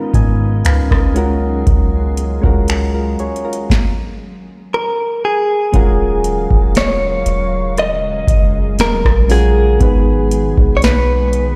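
Contemporary R&B with a moody, late-night feel, this cut from a longer piece sets soft, warbling electric-piano-like synth keys with chorus over a glassy FM pad in the background with ensemble chorus, built-in reverb and sidechain pumping, a deep, round 808-style bass and a booming, overdriven analog drum machine of deep kick, crisp snare, metallic hats, finger snaps and rim click, before a clean, direct-recorded electric guitar with digital delay takes the melody from 4.7 seconds, all heard through the stone reverb of a bare room on a big sound system.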